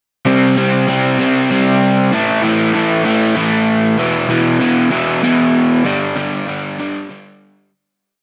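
A crunchy, overdriven electric guitar plays alone from 0.3 s, picking driving eighth-note power chords through C5, A5, E5 and G5 in a brooding, angsty rock piece at 64 BPM in 6/8. The double-tracked guitar sits up front, carrying a digital delay and a wet small-room reverb across its range from E2 to C4. The piece fades out from 5.8 s to 7.7 s.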